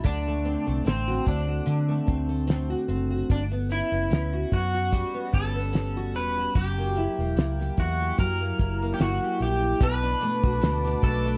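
A twangy, slightly broken-up electric guitar carries the melody through subtle chorus and slapback echo in this wistful, hazy excerpt of indie bedroom pop, moving at 74 BPM in B minor with a gentle swing. Beneath it, a full-bodied jumbo acoustic guitar shimmers with lush chorus and vibrato, while a round, foam-muted vintage bass and a cloth-damped, thuddy drum kit with a fat snare and tight kick sit up front in a dry, close 1970s-style sound. At 9.8 seconds the harmony settles onto Bm7 as a smooth, detuned analog pad and a grainy egg shaker in the background join in.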